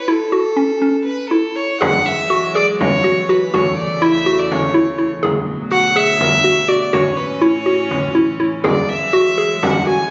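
An airy solo violin melody and a hollow, bouncy, detuned square-wave pluck with chorus open this shimmering, hopeful excerpt of contemporary chamber music in 7/8 at 245 BPM in A major, before a floating studio string section of sustained chords and a deep, vintage frame drum join at 1.8 seconds, all steeped in recital-hall reverb and captured on a phone in the room with a dull, rolled-off top.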